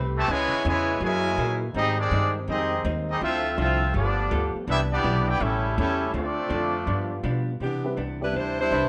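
A moderate large-studio reverb gives this brief cut from a longer big band swing piece a roomy sheen. It moves at a joyful 164 BPM in 4/4 with a swung eighth-note feel in C major. A clear, tight trumpet section carries the melody up front over a woody, thumpy pizzicato upright bass, a clean, compressed hollow-body electric guitar comping throughout, and close-miked trombone chords sustained in the background. A nasal, brilliant straight-muted trombone section adds a second line with light vibrato, while the harmony passes through chords such as Dbm7, Abmaj7 and Dm9 before settling on Cmaj9. At 7.6 s a smooth-topped saxophone section takes over the melody, a baby grand piano adds a short-sustained natural touch at 7.8 s, and warm trumpet stabs punctuate the close at 8.7 s.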